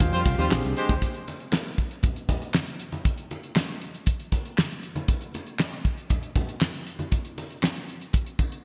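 A bright, 1980s-style digital production with light reverb and small-room ambience frames this danceable, late-night slice of early-eighties boogie funk at 118 BPM in straight 4/4. It opens on a one-second band accent over Eb69 and Bb13, where a breathy alto saxophone with delay, a distant horn section with light vibrato, a worn tine electric piano, a round, punchy muted bass and a very quiet, lush detuned pad all sound together. From 1.0 seconds the chords stop and the dry, up-front drum kit, with its fat snare, tight kick, hi-hat and handclaps, carries on with the thin-skinned, hard-hand congas, which drop out at 8.5 seconds, while the kit runs until 8.6 seconds.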